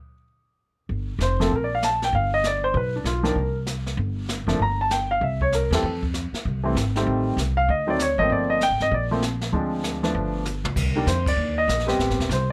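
A light reverb and a natural studio-room sound frame this cool, moody jazz piano trio excerpt in G minor, swinging at 194 BPM in 4/4 after 0.9 seconds of silence. A woody, thumpy pizzicato upright bass sits up front beside a smooth, vintage grand piano carrying the melody, while a brushed drum kit with dark cymbals and a boomy kick plays underneath. The changes move through minor-eleventh, dominant and half-diminished chords, with band accents at 5.7 and 11.2 seconds and a short drum fill leading into a new section near the close.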